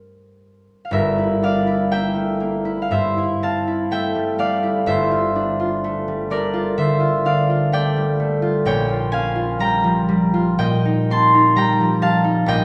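Classical solo harp, a wistful and gentle passage cut from a longer piece, moving at a slow 62 BPM in 4/4 with uneven beats and a rubato feel. The concert harp plays alone from 0.0 to 12.6 seconds, fingerpicked and ringing, its tone acoustic and warm as it spans from G1 up to C6. Set in G dorian, the harmony drifts from Gmadd9 through Gm6, Am7/G and Gm9 before darkening to Bbm6 at 8.6 seconds and settling on Cm7/Bb. The harp sits up front, yet a wet recital hall reverb with a 1.6-second decay surrounds it, giving the sense of a church or concert hall. The result is an intimate, softly suspended moment of unhurried reflection.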